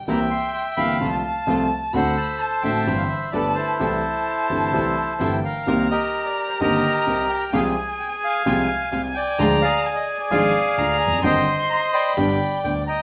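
A bowed solo violin opens this short tango at 0.0 s, its rich tone marked by vibrato and expressive portamento as it carries a high second line. An instant later an airy, reedy bandoneon sits up front with the tune, joined by a clear concert grand piano whose smooth, vintage accompaniment reaches down into deep bass, and a very quiet symphonic string section that adds biting, intense stabs with light vibrato. The piece moves at 129 BPM in 4/4 with a rubato feel, and its mood is playful and passionate as the harmony shifts from C major to C minor at 5.7 s. Moving from chords such as C7 and D7 into Cm7, Ddim and a closing G, the passage sounds cut from a longer performance. A moderate large-studio reverb gives the ensemble a sense of space while the close strings and forward piano stay present.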